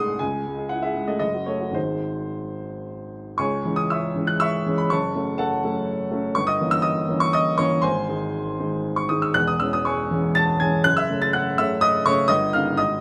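In a rubato 3/4 that moves between 107 and 128 BPM, this brooding, stormy romantic character piece in C# minor, cut from a longer work, is carried by a solo baby grand piano that sounds clear, open and up front with long sustain in light reverb, spanning E1 to A6 as it shifts at 3.4 seconds into a new section whose harmonies pass through F#m, Gdim7 and G# before closing on D#7/G.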